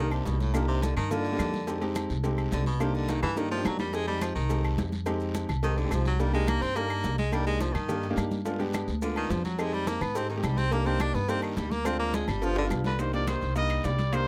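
Driving and sultry, this Afro-Cuban jazz excerpt in C minor races along at 212 BPM in a straight 4/4. A clear baritone saxophone with vibrato takes an up-front solo for the first 13 seconds, over a cycle of minor seventh chords that turns toward a G7 before resolving to C minor. An upright bass, played pizzicato on gut strings, sits up front with a dark, thumpy tone, while a warm, intimate concert grand piano comps with audible action noise and deep bass. Behind them, a dense acoustic percussion bed of bright damped congas, ringing metal-shelled agogo bells and timbales, woody claves, raspy guiro, grainy maracas, and very quiet, high-tuned vintage cowbell and bongos stays in the background, with drum fills at 3.1 and 12.6 seconds. At 12.9 seconds a breathy, punchy trumpet enters with a present vibrato solo as the tune moves into a new section. The sound is close and detailed, with little reverb.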